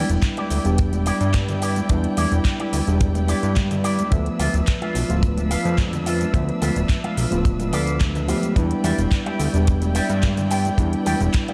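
Groovy and cosmic, this nu-disco excerpt at 108 BPM rides a fat, saturated analog bass and a tight, dry kick up front, with a house kit of metallic hats, handclaps and shaker, very quiet bright congas, a twangy envelope-filtered electric guitar riff with lush chorus and tape echo, a worn, slightly out-of-tune tine electric piano pumping with echo, and smooth, bowed studio strings holding sustained chords over Em7 and Dm69 in an echo-heavy small-room mix.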